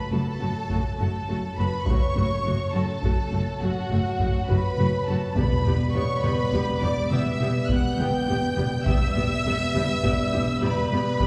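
Cinematic, epic orchestral film score in a relentless, heroic mood, moving at 69 BPM in a 12/8 metre in E dorian, cut from a longer piece and moving from F#m to Em at 5.4 seconds. A clear, intense violin section carries the melody high above, with vibrato and a lush, distant quality, while a second violin section supplies a smooth, even second line beneath it. A French horn section holds sustained chords in a classical style, and a lush viola section fills in the accompaniment with a smooth top. Cellos and a chamber double bass section anchor the bass, the cellos focused and close yet sitting in the background, the basses bowed with a warm, focused tone. A taiko ensemble struck with heavy sticks drives the music from 0.7 seconds, and a very quiet timpani with soft mallets adds a round E2 between 5.4 and 6.2 seconds, all set in a wet scoring-stage reverb heard from further back in the room.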